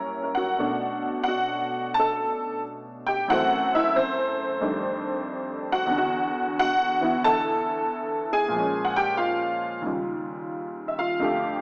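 Heard through a small-speaker sound with a wet, large studio reverb lingering about 1.2 seconds, this short solo jazz passage, cut from a longer piece, feels relaxed and swinging. A honky-tonk upright piano carries everything alone for its full 11.6 seconds, sitting up front with a detuned, jangly, vintage character. Its tone is bright and open, spanning Eb2 to A#5, with tuning set at A4 = 441 Hz. The tempo rests around 91 BPM in 4/4, with a rubato feel and swung eighths. The harmony moves from F#7b9 through Bm9 at 0.6 seconds, then F#m7b5, F13, Esus2 and Bbm7, before settling on Eb9 at 9.9 seconds.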